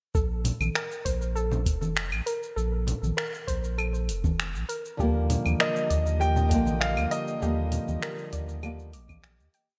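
Smooth and relaxed, this short sunset chillout piece in Bb major moves at 99 BPM over a straight 4/4 groove, opening on a Bbsus2 with a soft, round pluck playing an eight-step arpeggiated sequence through chorus and digital delay, a deep sine sub bass in a dotted rhythm, a soft electronic kick, and a light lounge beat of claves, finger snaps, hi-hat and shaker with gated reverb, joined by saturated high and low congas. At 5.0 seconds the harmony shifts to Ebmaj7 as a dark, fingerpicked nylon-string guitar adds held rootless chords with syncopated pushes. At 5.5 seconds an ethereal detuned pad settles in the background, and at 5.6 seconds a brilliant, intimate grand piano with audible action noise states a motif-based melody of call phrases. The bright, 1980s-style digital production carries a light ambience before the piece fades out from 6.6 seconds.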